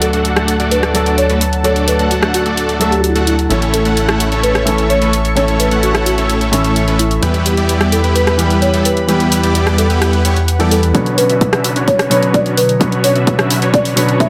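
A straight 4/4 pulse at 129 BPM drives this euphoric, anthemic festival progressive house passage, where a buzzing, woody marimba with soft mallets carries a delayed melody over a worn, intimate grand piano with audible action noise, a lush chorused pad with gritty 12-bit sampler texture in the background, a huge, detuned supersaw riff up front, and a fat, nasal analog bass, with the piano, pad, supersaw and bass all pumping to the sidechain as the chords move through D, A and Em, until the bass drops out at 10.9 s and a punchy, overdriven kick joins the bright-hatted house kit for a build-up on Bmadd9 with a filter sweep on the supersaw, everything set in a moderate digital hall reverb.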